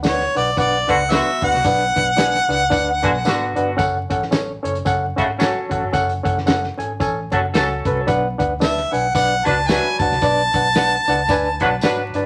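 Vinyl crackle and a moderate studio reverb frame this passionate, urgent slice of uptempo 1960s-style soul, cut from a longer piece and moving at 112 BPM in 4/4 with a swung eighth-note feel in B dorian. A barky, reedy electric piano sits up front, lightly overdriven and pulsing with fast tremolo through its built-in speakers, while a dark, foam-muted fingered electric bass gives a round, punchy bottom. The acoustic drum kit of hi-hat, kick and medium-tuned snare sounds tight with a pumping room and a rolled-off top, and a jingly tambourine rings in the background. A bright, close-miked harmonica carries the jazz-style melody with scooped notes and light vibrato, playing from the opening, dropping out at 3.6 seconds and returning at 8.6 seconds. A mellow, soft-attacked vintage horn section enters at 0.9 seconds as an up-front second line over harmony that moves from B minor to F-sharp minor and back.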